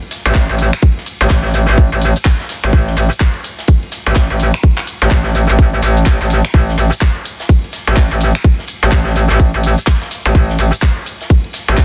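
A swung 126 BPM 4/4 groove drives this aggressive, gritty bass house excerpt. A tight, up-front electronic kick anchors it from 0.3 seconds, alongside a layered garage kit of crisp hi-hats, finger snaps, handclaps, ride and shaker with a softly clipped snare, while a very quiet big-room rock kit adds bright ride and a medium-tuned snare underneath. Sitting on A1, a metallic FM wobble bass, saturated and bright with chorus and overdrive, pumps against the kick in a dense, heavily limited, nearly dry mix.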